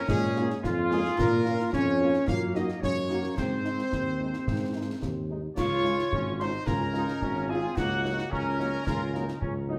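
Warm trumpets carry the melody over a distant, background woodwind line and clear, vintage trombone chords in this rousing, spirited military-style march for wind band in 2/4, joined by a smooth-topped euphonium second line until 5.3 s, an up-front mellow tuba bass, a very quiet French horn section, concert snare drum, bass drum and dark clash cymbals, and from 5.6 s a pure, hollow piccolo line, the whole excerpt set in a large studio reverb.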